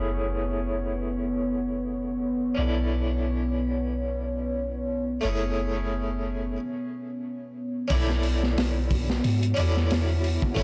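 A hypnotic, cinematic trip hop groove moves at 90 BPM in 4/4, with a slight swing on the sixteenths. A soft, round 808-style bass and a plucked, brilliant harpsichord run throughout. The bass sits up front with tube saturation, while the harpsichord is roughened by tremolo, vintage 12-bit sampler grit and tape echo. Beneath them, a deep, moody pad of detuned sawtooth and sine voices holds sustained chords, thickened with chorus and reverb, as the harmony alternates between F#m7 and Bm11 under a filter sweep and a brief break. At 7.9 seconds a crunchy breakbeat kit arrives, gritty with a tight kick and dark cymbals, and at 8.7 seconds a very quiet, flickering granular texture hovers on a single note. The whole short cut sounds blown-out and overdriven, with a low-pass filter and small-room ambience.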